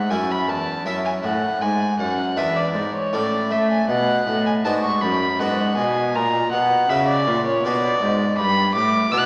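In a straight three-four lilt, this flowing, radiant fragment of a baroque-style sonata movement with continuo sets a reedy gut-string violin with light vibrato carrying the melody over a full, Flemish-style harpsichord on two sets of strings and a nasal, period-style cello holding the bass, the trio heard from further back in a wet scoring-stage reverb with a small-speaker sound.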